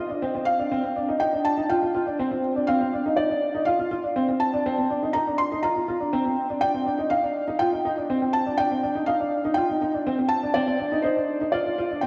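Electronica at 122 BPM in a straight 4/4, luminous and tender, resting on a Cmadd9 chord across this 12.1-second excerpt. A felt-muted upright piano carries the melody in its upper register, soft and thin-felted with a short sustain and a diffuse ambient delay, while a dark upright piano plays a woody, vintage-toned riff below it, its action noise audible beneath a lush chorus and the same diffuse delay. Both pianos sit up front and intimate in a dreamy mix soaked in plate reverb.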